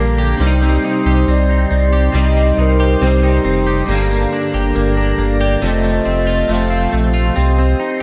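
This blissful, dreamy dream pop passage moves at 69 BPM in 4/4. It opens with a twangy, picked electric guitar playing arpeggios through analog chorus and delay, alongside a flute-like tonewheel organ holding sustained chords through a slow rotary speaker. Beneath them, a deep sine-and-triangle sub bass with an added octave sits up front. A second clean guitar, recorded direct and compressed, adds tremolo-and-chorus accompaniment in the background. At 1.3 s a hollow, woody synth lead resembling a clarinet enters with the melody; its soft attack, vibrato and detuned square-and-triangle tone are colored by chorus and delay. The harmony moves from Cm to Gm and F before returning to Cm at 7.4 s, and a lush hall reverb soaks this short cut from a longer piece.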